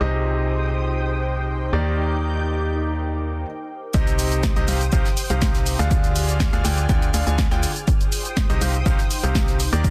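A dense, heavily limited modern mix with small room ambience carries this bittersweet, soulful piano house cut from a longer piece, where a bright grand piano riff with audible action noise and delay rides over a hollow, organ-like FM bass, a silky analog string pad with ensemble chorus, and an ethereal airy pad with phaser and reverb in the background, each pumping against the sidechain. A filter sweep on the string pad runs through the opening, the music stops at 3.5 seconds, and the drop at 3.9 seconds brings in a punchy, tape-warm electronic kick, a house kit of snare, hi-hat and cabasa, and a very quiet soft brush kit. The harmony moves from minor chords through a major seventh and a diminished chord.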